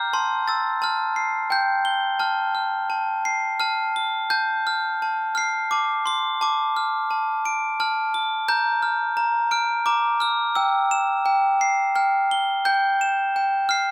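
A bright, bell-like glockenspiel struck with hard plastic mallets plays alone and up front from the start, ringing high in a moderate recital-hall reverb through this innocent, sleepy children's lullaby in F major at 86 BPM in a gentle 3/4, moving from F through D minor, B-flat and C after a brief opening phrase gives way to a longer second section at 4.3 seconds in this short cut from a longer piece.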